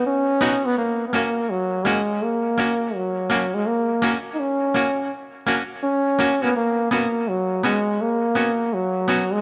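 Laid-back and uplifting, this reggae excerpt moves at 83 BPM in 4/4 with a swung sixteenth-note feel, drifting from Cbadd9 to Gb and on to Db7sus4. An up-front solo trombone carries the melody from 0.1 seconds with a bright, pop-style tone and light vibrato, while a clean, picked semi-hollow electric guitar adds accompaniment from 0.4 seconds, its hollow-body sound colored by tremolo. Both parts are soaked in dub echo and set in a moderate echo-chamber reverb, with a dark production and a layer of vinyl crackle.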